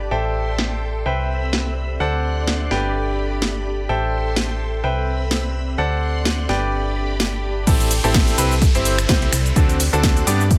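A bright grand piano riff with dub echo opens this bittersweet, soulful piano house excerpt at 127 BPM in A minor, over a round FM bass, shimmering vintage string-machine violins and a warbling, lo-fi tape-like pad in the background, all pumping to the sidechain through an Am7–Cmaj7–D7–G progression. A layered, tape-warm house kit with a cracking snare, hi-hat, cabasa and finger snaps arrives at 0.6 seconds, its hats and room low-pass filtered over a light 16th-note swing. At the drop at 7.7 seconds, a punchy analog kick lands alongside an electronic downlifter.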